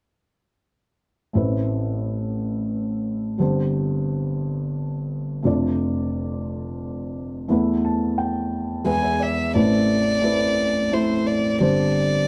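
Acoustic folk-pop ballad in A minor at 88 BPM in a straight 3/4, melancholic and reflective, cut from a longer piece, where a muted, mellow felt-muted upright piano carries the accompaniment from 1.3 seconds through chords such as Amadd9, Gsus4 and Dm/F, and a single close violin with light vibrato, soft attack and an airy sul tasto bow enters at 8.9 seconds to sing the melody, both up front in a dark production with light reverb.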